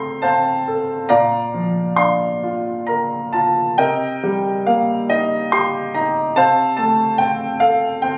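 A clear grand piano carries this brief classical passage alone, its smooth, vintage tone sitting up front with a short sustain. The mood is reflective and dark, set in C dorian and tuned to A4 = 443 Hz, with the playing moving in an unhurried 3/4 at roughly 66-73 BPM and a flexible rubato feel. Over about 8.2 seconds the harmony moves from F/C to Bb, settles on Cm7 at 3.8 seconds, and returns to F/C, with the piano ranging from Bb2 up to C6. The sound places the instrument in a moderate studio reverb blended with a club-like ambience, captured on a phone in the room and given compression. Cut from a longer piece, it feels like a lyrical moment lifted from a larger work.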